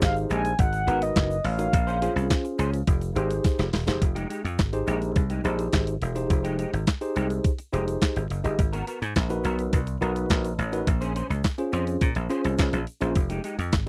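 Slick and funky, this early-eighties boogie funk cut rides a crisp 8-bit digital drum machine with a thumpy kick, medium-tuned snare, handclaps and hi-hat, alongside a punchy, foam-muted thumbed slap bass up front and a grainy egg shaker in the background. A mellow, horn-like sawtooth synth lead with detuned chorus and vibrato sings a brief melody that stops at 2.6 seconds, while a clean tine electric piano comps and a fingered semi-hollow guitar with analog chorus carries the riff over minor-ninth chords. A drum fill at 3.4 seconds opens into the second section, all captured in a dry, close 1970s-style studio sound.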